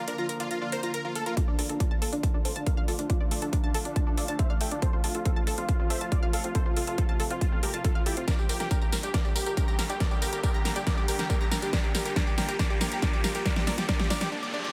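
A punchy, up-front electronic kick arrives at 1.4 seconds and anchors this emotional, driving uplifting trance cut from a longer piece, with a tight sequencer bass of mellow sawtooth and square-wave plucks sitting barely audible beneath it. Above them, a huge, thick supersaw lead of detuned unison sawtooths with a sub octave and vibrato carries the melody, compressed and pumping against the kick, with delay and a filter sweep that runs through the build-up. An analog pluck plays round, bright arpeggios with chorus and delay, while a shimmering, ethereal pad holds sustained chords in the background, its granular, warbling vintage tone lifted by an octave-up shimmer. The layered big-room kit adds a huge snare, metallic hats and tambourine, and rolls into a drum fill as the build intensifies. A background riser enters at 5.4 seconds, and over a Bb, Dm, F and Gm progression the passage drops into a brief break at 14.3 seconds marked by a reverse cymbal, all in a dry mix with little reverb.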